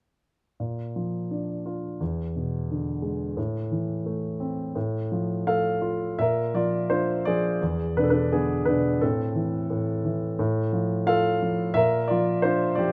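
Rubato phrasing stretches a 4/4 pulse around 86 BPM in this sunny, relaxed fragment of lyrical classical solo piano in Bb lydian, where a dark, mellow concert grand with deep bass sits up front under close, detailed microphones and light reverb, playing from E2 to F5 between 0.6 and 12.9 seconds as a Bb, E7, Am, F/A progression unfolds and then begins again at 6.2 seconds before the music is cut from its longer piece.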